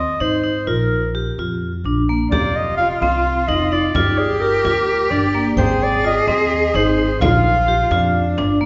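Set in an uneven 7/8 with a straight feel, this fragment of contemporary chamber music feels pensive yet urgent. A warm, present clarinet carries the melody in a classical solo voice up front, while a vibraphone struck with hard mallets spins metallic, ringing arpeggios with a slow motor vibrato and a dark, smooth edge. Beneath them, a pizzicato upright bass with steel strings gives a woody foundation close to the listener. At 2.3 seconds a single bowed cello enters with a clear, focused second line and vibrato, joined by a deep, large frame drum sitting in the background. The whole ensemble sounds as if captured in a church or concert hall, with a wet recital-hall reverb and a softened top end.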